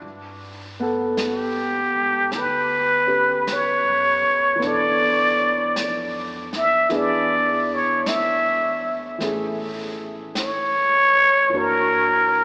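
A romantic, tender jazz ballad excerpt with a gentle swing, where a raspy, plunger-muted trumpet sits up front from 1.3 seconds with growling wah-wah tones, scooped notes and light vibrato over an intimate concert grand piano with audible action noise, a woody, dark pizzicato upright bass in the background, and a vintage brush kit on snare and hi-hat, all bathed in a long cathedral reverb and an AM radio sound.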